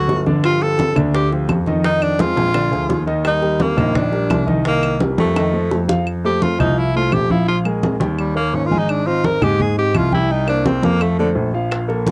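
A clear, punchy tenor saxophone leads this sunny, sophisticated Afro-Cuban jazz cut from a longer piece, sitting up front with vibrato, scooped notes, a smooth top and a forceful jazz style. A warm concert grand piano accompanies with an intimate, natural tone, deep bass, long sustain and audible action noise, while a second grand piano, natural and up front, carries the bass line. Ringing, low-tuned congas played with soft hands run throughout, joined by woody, close claves and tight, high-tuned bongos struck with hard hands in the background. After a drum fill, the saxophone takes a solo from 6.1 seconds; the bongos drop out at 6.0 seconds and return at 11.7 seconds. The harmony moves through chords such as Fm7, Bb7, Ebmaj7 and Abmaj7, all captured in a dry, close 1970s-style studio sound with little reverb.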